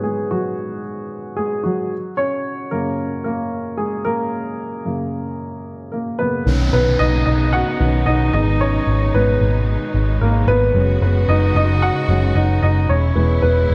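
A dark, warm mix with light small-room reverb frames this uplifting, hopeful piano-driven pop excerpt at 112 BPM with a gentle 16th-note swing, tuned slightly flat to A4 = 438 Hz. A worn, woody, slightly detuned upright piano carries the opening alone over G#m7 and F# chords until 6.5 seconds, when a round, punchy, foam-muted electric bass and a lush, bowed string section with expressive vibrato join under the shift to Badd9. An electronic downlifter sweeps beneath the strings until 10.8 seconds as the harmony moves through G#m, F#sus2 and E.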